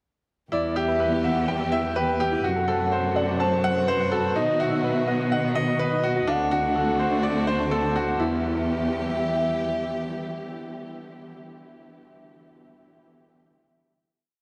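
Piano and strings electronica in E minor at 125 BPM, this whole piece feels moving and cinematic, set in a huge ambient reverb. It opens straight into a drop at 0.5 seconds, where a velvety synth lead with chorus, delay and vibrato sings arch-shaped motif phrases, while a dark studio string section holds expressive, bowed chords with portamento beneath. A bright, woody upright piano sits up front playing an eight-step arpeggiated riff with delay, and a soft, round pluck adds a very quiet five-step loop that drifts against the bar. A muted symphonic cello section, veiled and con sordino, sustains the root bass through the progression from Em through F#dim, B and D7. At 8.2 seconds the music settles on a final Em chord, and once the lead and strings fade at 11.4 seconds, the piano rings on alone until 14.4 seconds.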